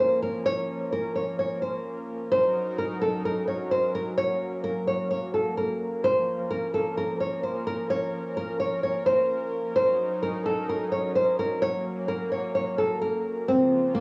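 This hip hop fragment, cut from a longer piece, sits in Bb minor at 129 BPM in 4/4 with a half-time feel, tuned slightly low at A4 = 436 Hz. The mood is brooding and dark. An up-front nylon-string guitar carries the melody, fingerpicked in a classical manner with audible finger squeak, its acoustic tone shaded by a low-pass filter. Beneath it, a warm analog pad sits well behind the guitar and holds sustained chords with a soft attack. Its detuned sawtooth voice is smooth yet bright, colored by chorus, tremolo and cassette tape. The harmony moves through Bbm, Ebm7 and Gb twice before returning to Bbm at 13.5 seconds, both parts playing throughout the 14 seconds, while moderate spring reverb and a small room give it the intimate, lo-fi character of a home recording on cassette.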